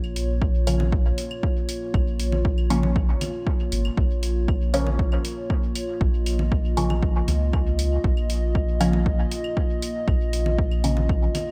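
Meditative and hazy, this dub techno fragment, cut from a longer piece, sits in a steady, straight 4/4 groove over a single Bb minor chord. A punchy, overdriven electronic kick drum sits up front, joining at 0.4 seconds just after an electronic hi-hat that arrives at 0.2 seconds, carrying the color of being re-recorded in a small room. A soft, round dub sub bass with a triangle and square wave tone sustains low beneath, while a dark analog pad of detuned saws, square waves and a sub octave, roughened by ring modulation and washed in chorus, breathes in slowly and holds its chords with a long release. Entering at 0.7 seconds, a muted, filtered dub chord stab plucks short, detuned sawtooth and pulse-wave hits through phaser, cassette tape coloring and dub echo, with a filter sweep running across it for the whole stretch. Layered, overdriven claves and congas drift in the background through their own dub echo, and sidechain pumping on the pad, bass, stab and percussion gives the mix its gentle breathing motion under a light reverb.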